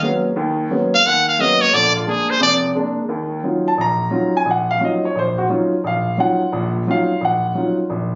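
Jazz with a hypnotic, spiritual mood, swung in four and cut from a longer performance. A warm, natural grand piano sits up front as accompaniment throughout, spanning deep bass to upper register and moving from G#m11 through A#7 before settling on Ebm9. A brilliant trumpet carries the melody as a brief solo from 0.9 to 2.6 seconds, punchy and forceful, with light vibrato and scooped notes in a present, up-front jazz style. After the trumpet drops out, the piano continues alone to the close at 8.2 seconds. The sound has the character of a phone capture in a club, with moderate room reverb, compression and a dulled top end that softens the edges.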